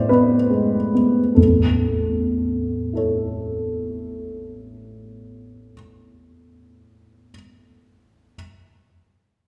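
A wet recital-hall reverb with a 1.8-second decay surrounds this short excerpt, heard from further back in the room, yet the piano itself sits up front with an intimate, natural presence. It is a romantic character piece for solo piano at 77 BPM in 3/4, played with rubato and a brooding, bittersweet mood. The dark baby grand has a mellow, worn tone and short sustain, and the audible action noise adds to its closeness as it ranges from A1 to D5. The opening moment rests on an E7/A chord while the tempo slows over the first 1.4 seconds. At 1.4 seconds the harmony settles onto A and a new section begins, lasting until 6.1 seconds, and the piano plays on until 8.4 seconds, where the excerpt is cut from a longer piece.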